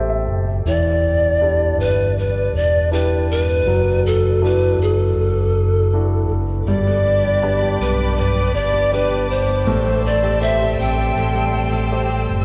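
Bathed in a wet cathedral reverb that places it in a church or concert hall, this emotional, hopeful pop passage at 80 BPM in G major opens with a clear, polished baby grand piano fill over a punchy, up-front fingered electric bass. At 0.7 seconds a breathy, mellow pan flute with bamboo chiff, vibrato and an unsteady, rolled-off tone takes the melody over chords moving from Em7 to Dadd9/F#, G and Am7. At 6.7 seconds a full-bodied picked steel-string acoustic guitar adds arpeggios, while an intimate, bowed string section holds smooth, sul tasto chords.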